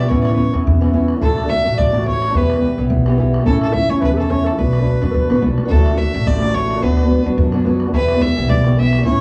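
A rich, biting bowed fiddle carries the melody of this driving, wild Celtic reel, backed by an up-front, boxy fingerpicked acoustic guitar with a swing feel, a woody pizzicato upright bass and a boomy bodhran set distant in the background, while a pure, soft-attacked wooden baroque flute with vibrato adds a second line from 1.2 to 5.4 seconds, the whole passage sitting in moderate studio reverb with the worn, warbling pitch drift of old cassette tape.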